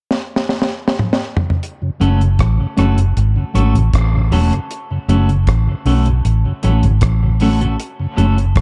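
Heavy and spacious, this dub reggae cut opens with a drum fill from 0.1 s on a dry, up-front kit with a high-tuned snare, tight kick, rim clicks, hi-hat and toms. A soft, flute-like tonewheel organ with slow rotary speaker sits in the background from 1.8 s and settles on F# minor. At 2.0 s a round, foam-muted vintage bass arrives prominently alongside a clean, picked electric guitar with dub echo, all set in a small room with a dark, warm production.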